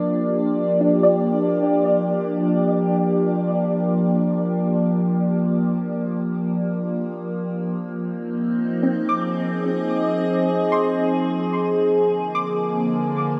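An evolving, morphing wavetable pad sits up front with slow-attack sustained chords, thickened by chorus, phaser and its own reverb, while a soft, round, dark pluck plays gentle decaying arpeggios in the background through ensemble chorus and a diffuse delay, the pair drifting from Gm7 to Fm7 at 7.2 seconds and Bb7 at 11.5 seconds inside a huge, wet reverb that makes this short fragment of serene, spacious ambient music feel vast.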